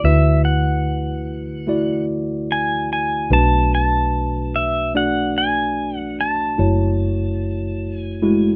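A worn, slightly out-of-tune tine electric piano and a woody, round, hollow-body fretless bass open together beneath a bright, twangy pedal steel melody played with fingerpicks, slide and volume swells, as this nostalgic, intimate acoustic folk-pop ballad at 73 BPM, cut from a longer piece, moves through Dadd9, Bm7 and F#m7 in light reverb.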